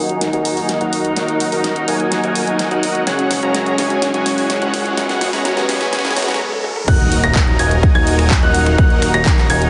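Soft, distant bowed strings, a fat, nasal analog bass in the background and a thick, detuned supersaw riff pumping up front under a filter sweep open this powerful, euphoric festival progressive house excerpt, while a big-room drum kit with a huge snare plays a fill and, from 3 seconds, a very quiet riser builds. After a brief break at 6.4 seconds, the drop lands at 6.9 seconds with a punchy, layered electronic kick and high, mellow grand piano arpeggios trailing dub echo. Everything sits in a lush hall reverb with a heavily compressed, radio-like sound.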